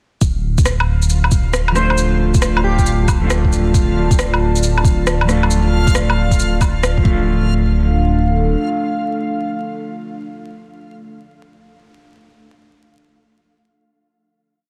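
A muffled, overdriven two-step kick and a skittering, shuffled beat of shaker, rim click and low woodblock set a swung 136 BPM groove in this ghostly, wistful future garage piece in D minor, where a deep, rumbling detuned saw bass holds the root beneath a reversed, swelling texture on a held high note. A moody analog pad with chorus and phaser enters at 1.3 seconds, joined at 1.7 seconds by sparse, echoing chord stabs from a clean, mellow electric guitar, both pumping with sidechain compression. An airy, dreamy lead adds a short phrase with vibrato and cassette-tape colour from 1.8 to 2.8 seconds, and after the groove a final hit rings out from 7.3 seconds over a dense, heavily limited master laced with vinyl crackle.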